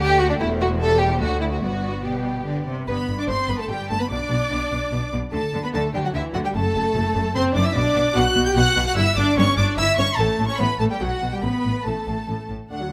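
Close, detailed microphones and a moderate scoring-stage reverb frame this graceful, lively classical-period movement for string orchestra, cut from a longer piece, at a quick 147 BPM in 3/4 and G major, where a focused violin melody sings with vibrato above an up-front second violin line with soft attack, smooth, even violas, lush cellos and a clear double bass section, the harmony moving from a short opening passage into a longer one through Bm and F#dim before settling on Asus2 at 11.4 seconds.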